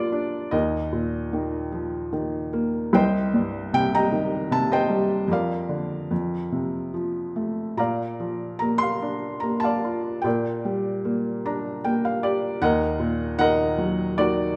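A felt-muted upright piano performs alone, sitting up front with a soft, intimate tone, thin felt and short sustain, as it plays a wistful, melancholic classical piece in B-flat major at 75 BPM in 3/4, with uneven, rubato timing. Harmony moves from Bbadd9 through Cm, Bb/F and F to Gm/Bb, and a brief piano fill arrives at 11.1 seconds before the excerpt closes on a darker Ebm chord. A moderate scoring-stage reverb surrounds the piano across its range.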